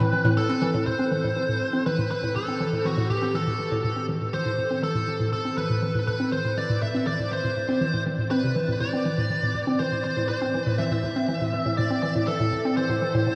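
Ambient piece in A minor at 121 BPM, expansive and hypnotic, cut from a longer work: an up-front, biting overdriven lead guitar carries the melody through shimmer reverb and tape echo while a hollow, bouncy, detuned square-wave pluck with a moving notch repeats a mellow riff through chorus, shimmer reverb and tape echo, both playing from 0.0 to 13.4 seconds as the harmony moves from A5 to A minor at 0.9 seconds inside a huge, drenched reverb tail of 8.6 seconds, tuned to A4 = 439 Hz.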